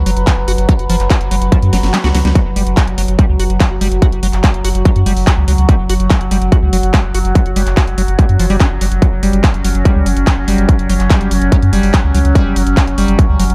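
A driving psychedelic trance cut from a longer piece, where an up-front distorted kick and a cracking, overdriven techno kit of handclaps, hi-hat and snare push a deep, round analog bass, while a squelchy, resonant acid bass riff with chorus and tape echo weaves over a slow-attack, sawtooth drone of moving overtones and sidechain pumping, all in a dark, dry production, briefly broken around 1.9 seconds when the kick drops out under a drum fill and a very quiet swell.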